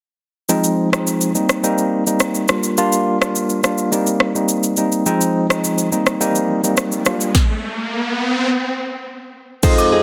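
A bright, clean tine electric piano sits up front, laying down mellow, hypnotic chords over an electronic afrobeats drum kit with a deep kick, a sharp, lightly clipped snare, rim clicks, shaker and crash cymbal. An up-front electronic riser builds from 6.4 seconds as the groove drops into a stop. At 9.6 seconds, a round, octave-layered synth lead with chorus and phaser joins a mellow bassoon with light vibrato and a dark fingerpicked nylon-string guitar in the background, and a moment later comes a brief hit of agogo bells, all under light digital reverb and a dense modern master.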